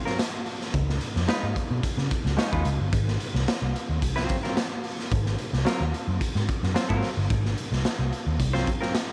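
A raw garage drum kit sits up front in this short funk excerpt, its punchy kick, medium-tuned snare and hi-hat sounding saturated and gritty in a bright, pumping stone room with a rolled-off top. At 110 BPM in a straight 4/4 and Ab mixolydian, the mood is playful and strutting, with a dark, round, foam-muted picked bass entering at 0.7 seconds beneath a clean, fingered semi-hollow electric guitar that carries a subtle chorus and compressed hollow-body tone. The chords move from a rootless Ab13 to Db9 and back to Ab13 at 2.9 seconds, all set in light reverb and small room ambience.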